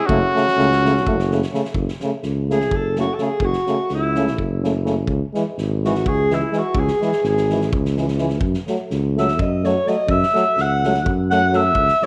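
Over a straight 7/8, this bittersweet, virtuosic Balkan brass band fragment opens with a classical-style trumpet phrase that gives way at 1.7 seconds to a mellow, roomy alto saxophone solo with light vibrato, carried by a dark, punchy tuba bass, two clear euphoniums holding accompaniment in the background, and a distant acoustic drum kit with a fat snare, punchy kick and rolled-off top, all bathed in a wet plate reverb as the harmony moves from F#m to C#m and back.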